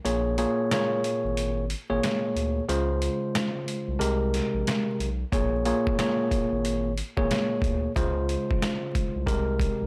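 A dry, gritty recording with vinyl crackle frames this tough, dark boom-bap hip-hop cut from a longer piece, swung and moving through Bbm7, Dbmaj7 and Abmaj7. A bell-like, bright tine electric piano with a cassette-tape tint sits up front, while a deep, thick saturated sub bass with a fast attack sustains beneath it. The sampler-style drum kit is compressed and pitched down, with a thumpy kick, medium-tuned snare and hi-hat carrying the sound of a large room; the opening runs as a break until 5.3 seconds, with the kick muted from 4.0 seconds.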